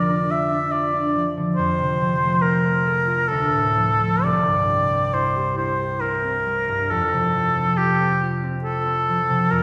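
Tender and serene, this 9.6-second passage from a longer romantic classical duo in F major moves at an unhurried 68 BPM in a rubato 3/4, with an up-front oboe singing the melody with a soft attack and light vibrato over a concert harp's fingerpicked, ringing accompaniment, both bathed in the generous reverb of a church or concert hall.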